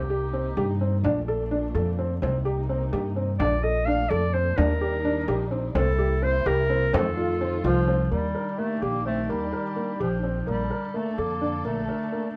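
Shimmering and hopeful, this chamber music excerpt in Bb major moves in an uneven 5/8 at 254 BPM in eighths, with a straight feel and light reverb. A clear clarinet with light vibrato and scooped, jazz-style notes sings the melody up front, sounding briefly at the opening and then returning at 3.4 seconds to carry through to the end. Beneath it, a felt-muted upright piano plays mellow, intimate arpeggios with audible action noise, a woody pizzicato upright bass holds the low end, a veiled con sordino string section sustains dark bowed chords, and a frame drum played with hard hands sits in the background of a live room until 7.9 seconds.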